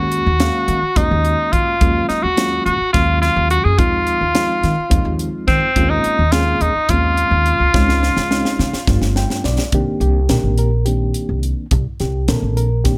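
A bright, forceful tenor saxophone leads from the opening moment in a slick, driving electric jazz fusion passage, backed by a reedy electric piano with a fast tremolo, a woody pizzicato upright bass and a crisp studio drum kit. The music moves at 212 beats per minute in 7/8 with a straight feel, centred on Eb dorian over chords such as Ebm11, Fm7/Eb and Bbm9/Eb. The saxophone plays with vibrato and a vintage jazz edge, sitting up front alongside the airy, polished drums with their high-tuned snare and punchy kick, while the bass stays dark and the piano sounds clean and direct. A drum fill begins at 7.7 seconds as the harmony turns through Dbmaj7 and G7, the piano adds a fill of its own, and the saxophone drops out at 9.2 seconds. From 9.7 seconds the piece shifts to C dorian on a Cm7 chord, with piano, bass and drums carrying on in a dry, close-sounding room until the cut.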